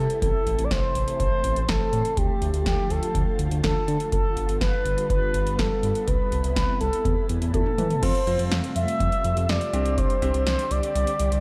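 A cool digital ambience with light reverb surrounds this nocturnal synth-pop fragment in straight 4/4. An up-front, dark and expressive synth lead with vibrato, chorus, slapback echo and shimmer reverb carries the melody over a silky string machine's sustained chords, colored by phaser and ensemble chorus, while a smooth, wave-folded synth bass holds the low end. A tape-toned analog drum machine, up front with a deep kick, punchy snare and metallic hats, plays a fill at 7.5 seconds; at 8.0 seconds the harmony shifts to Fadd9 and Csus2 as a clear, vintage grand piano adds accompaniment until 10.8 seconds.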